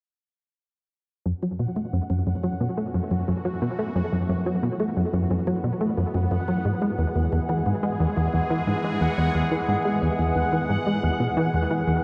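A straight 4/4 pulse at 89 BPM drives this hypnotic, mysterious stretch of sequencer-driven ambient space music in F# minor, tuned to A4 = 439 Hz, as all three parts enter together at 1.3 seconds and move from F#m7 to E at 6.6 seconds. Up front, a plucky, punchy analog bass riff with a funky sawtooth-and-square snap carries analog chorus and tape echo, while a sweeping, resonant pad fades in behind it with airy, detuned sustained chords, a noise layer and a filter swell under chorus. High above, a bubbling texture steps randomly through its resonant filter on F#5 with chorus and built-in reverb, and a huge reverb with a 7.2-second tail soaks the whole dreamy mix.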